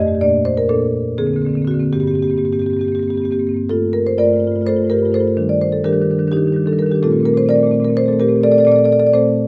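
Contemporary classical music for solo marimba, hypnotic and reflective, moving in a supple, rubato 7/8 from a brief cut of a longer piece. The marimba, struck with medium mallets, sounds warm and mid-forward, sitting up front under close, detailed microphones with a touch of light reverb, and it ranges from F2 to Eb5 across rich extended harmonies such as Bbmaj7, Gm9 and Ebmaj7. Its opening idea returns at 3.7 seconds and carries on until the fragment breaks off at 9.5 seconds.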